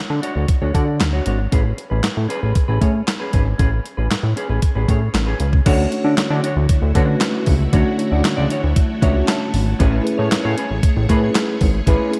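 A straight 4/4 groove at 116 BPM drives this smooth, danceable slice of early-eighties boogie funk, taken from a longer piece. A crisp 8-bit digital drum machine sits up front from the opening moments, its thumpy kick, medium-tuned snare, handclaps, hi-hat and crash carrying a tape-warmed, sampler-style character. Beside it, a fat analog bass runs between G#1 and D3, thick and detuned with sawtooth and square-wave tones, ring modulation and a filter sweep. A clean semi-hollow electric guitar plays a fingered riff bathed in lush chorus over chords moving between Dmaj7 and Amaj9. At 5.7 seconds a mellow tine electric piano enters with accompaniment and a fill from 8.8 to 9.8 seconds, while a full-bodied vintage string machine swells in with slow-attack sustained chords, a sub octave and ensemble chorus. A moderate hall reverb soaks the mix and gives it a dreamy glow.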